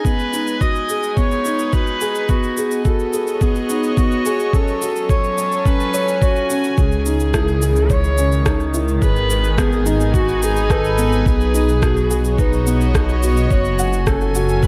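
A dark, woody solo viola with vibrato and delay opens this cinematic, moving piano-and-strings electronica over a pumping bed of gut-toned studio strings, a felt-muted upright piano riff with its own delay, and a muffled, thumpy kick up front, with an overdriven shaker and rim click sounding from a large room. A filter sweep on the viola carries the build-up until the drop at 6.8 seconds, when a deep, rumbling, detuned saw bass enters with sidechain pumping. The piano stays soft and boxy throughout, and light studio reverb gives the short cut an intimate sheen.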